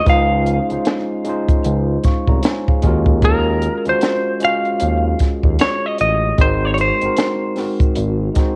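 A relaxed, swung sixteenth-note neo-soul groove in 4/4 at 76 BPM sets up this R&B piece in Db major, cut from a longer work, as it moves through Dbmaj9, Ebm11 and Ab7. Up front, a dry compact cocktail drum kit with a punchy kick and high-tuned snare sits beside a smooth, nasal, detuned synth bass with vibrato, while a clean tine electric piano heard through its built-in speakers plays the accompaniment. A warm, fingered, compressed semi-hollow guitar carries the melody with spring reverb until 7.9 seconds, and the guitar, keys and drums share a cassette-tape colour within a lightly reverberant home recording.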